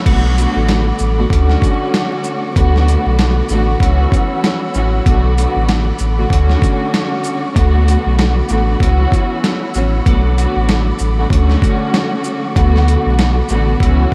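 Soaked in cavernous reverb and vinyl crackle, this dark, tough boom-bap hip-hop excerpt sets lush, woody bowed strings with cassette-tape colour and a soft, flute-like tonewheel organ with key click and fast rotary speaker over a deep, round sine sub bass and a gritty, overdriven sampler-style kit of thumpy kick, medium-tuned snare, hi-hat, shaker and crash, all cycling through Bm7, Dmaj7 and F#7sus4/C#.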